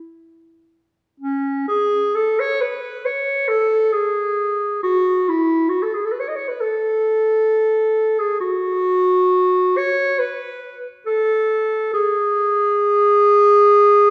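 This classical fragment is a free, expressive piece for unaccompanied clarinet, yearning and mournful, moving at around 67 BPM in 4/4 with uneven, rubato beats and tuned slightly low to A4 = 437 Hz. The warm clarinet plays alone from 0.0 to 14.1 seconds, ranging from C#4 to D#5 in a classical style, sitting up front yet sounding distant and roomy. A wet recital-hall reverb with a 1.7-second decay places it in a church or concert hall.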